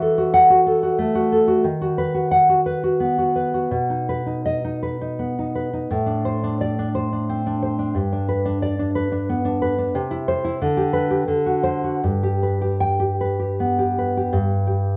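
Passionate and intimate, this romantic piece for solo classical guitar unfolds in a rubato 3/4 at roughly 77-94 BPM, its dark, full-bodied, thumb-plucked nylon-string guitar placed up front across a range from G2 to G5, moving from Esus24 and B chords into G major at 5.9 s and cadencing through C, G/D and D7 back to G before the chords drop away at 14.3 s, all carried by a moderate large-studio reverb that captures the live performance in one room, in a passage cut from a longer piece.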